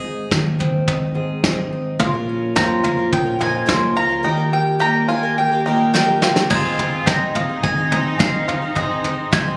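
Uplifting and warm, this indie folk excerpt moves at 106 BPM in a straight 4/4 in Ab major, led by a bright, double-strung bowl-back mandolin melody with slapback echo over full-bodied fingerpicked steel-string guitar, a woody, thumpy upright bass in the background and a soft brush kit up front. At 2.0 seconds a boxy, shimmering octave-doubled twelve-string guitar and a twangy banjo playing arpeggios join, and after a drum fill the arrangement builds at 6.5 seconds as a smooth bowed cello with vibrato adds a second line and a very quiet, ethereal glass harmonica holds sustained chords. Light small-room reverb, club reverb and compression surround the music, which was captured on a phone in the room.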